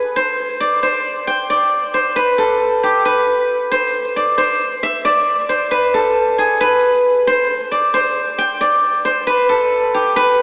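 Set at 135 BPM in 4/4 with a half-time feel, this brooding, melancholic hip hop excerpt unfolds at an unhurried, heavy-lidded pace. A lone steel-string zither carries the whole piece from 0.0 to 10.4 s, playing between G4 and G5, plucked with fingerpicks so its notes ring out silvery and warm while sitting up front in the mix. A low-pass filter shades that acoustic tone, and tape echo trails behind the phrases. The sound is drenched in a lush hall reverb with a long 2.9-second tail, giving the mix a dreamy, soaked quality, yet it comes through with a small-speaker character. Cut from a longer piece, the fragment lingers in a single reflective mood throughout.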